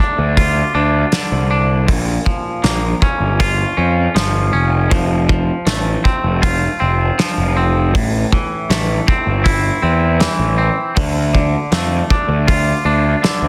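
A straight 4/4 pulse at 79 BPM drives this short cut from a longer quiet-loud alternative rock piece, its mood cathartic and bittersweet. A loose indie drum kit of hi-hat, punchy kick and medium-tuned snare sits up front in a pumping studio room, its top rolled off. A fuzz-laden picked electric bass enters at 0.2 seconds, overdriven and growly, holding the low end between F1 and F2. A twangy, scooped electric guitar plays clean, bright arpeggios from A2 to F4, moving through Dm, Bbm, F and Am before returning to Dm at 11.0 seconds. The studio ambience and dense, heavily limited modern master keep the whole passage close and forceful.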